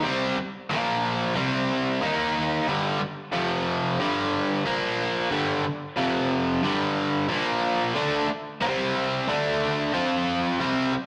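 A rough rehearsal-room recording with tube saturation, this short rock passage is cut from a longer piece and sits in a stone room whose reverb hangs for about 1.5 seconds. A single cranked stack guitar plays alone from start to finish, electric, bright and overdriven, picked and double-tracked, and placed up front in the mix. At 91 BPM in a straight 4/4, the mood is swaggering and gritty, with the guitar ranging from F2 to F4. Its power chords move through C5, Bb5, Eb5, G5, F5 and D5, returning often to G5 and Bb5 before settling on F5 near 9.9 seconds. The grainy saturation and the wet, stony space give the lone part a raw, live-in-the-room weight.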